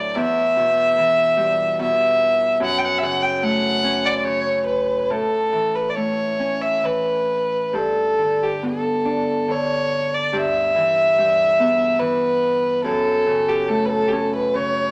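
The rhythm is free and rubato, in a slow 3/4 that hovers between 67 and 75 BPM, giving this Celtic slow air a breathing, unhurried pulse. Set in E dorian, the short passage from a longer piece carries a longing, haunting mood as the chords move from Em through F#m, A and G before returning to Em/G and F#m. A single bowed fiddle carries the melody for the full 14.9 seconds, sitting up front with a dark, nasal, woody and slightly boxy tone touched by light vibrato. Beneath it, an acoustic Celtic harp provides fingerpicked accompaniment in a lower register, its ringing strings lending a gentle glow under the fiddle line. A moderate reverb from a large studio space wraps the performance, adding depth to this single, continuous section of folk melody.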